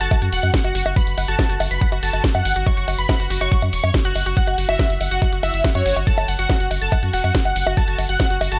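A thick, detuned sawtooth lead with vibrato leads this driving, psychedelic trance excerpt at 141 BPM in F# phrygian, carrying a phaser-tinged, delayed, sidechain-pumped melody over a punchy, ring-modulated pluck riff, a round, deep analog bass with tube saturation and a filter sweep, a drum kit of bongos, hi-hat, ride and cracking snare, and a knocking electronic kick up front from 0.1 to 8.3 seconds, all in a dry, close sound.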